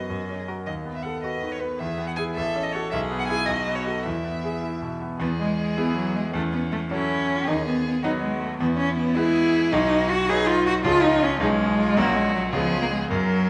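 A straight 6/8 pulse drives this quick, spirited and graceful classical-period movement for piano trio, cut from a longer piece and heard in a reverberant recital hall. The bright, brilliant grand piano sits up front with short-sustained accompaniment, and the rich, bowed cello carries an expressive second line close to the listener, with a soft attack, vibrato and portamento. The warm, smooth-topped violin sings the melody lower in the balance with the same gentle attack, vibrato and gliding portamento. A new section begins at 5.2 seconds, and the harmony turns toward C-sharp chords in the closing seconds.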